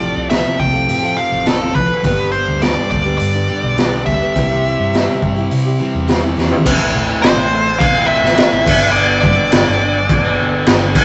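A nasal, overdriven lead guitar with a parked wah and digital delay carries the melody up front in this angsty, dark quiet-loud alternative rock excerpt at 104 BPM, over bright picked steel-string acoustic arpeggios with finger squeak, a thick fuzz riff, and a round, punchy hollow-body bass, while a gritty, boomy garage drum kit with a high-tuned snare enters at 0.3 seconds, fills at 6.4 seconds, and plays on as a compressed fuzz guitar riff takes over at 6.7 seconds, all in a rough, saturated rehearsal-room sound with light reverb and a rolled-off top.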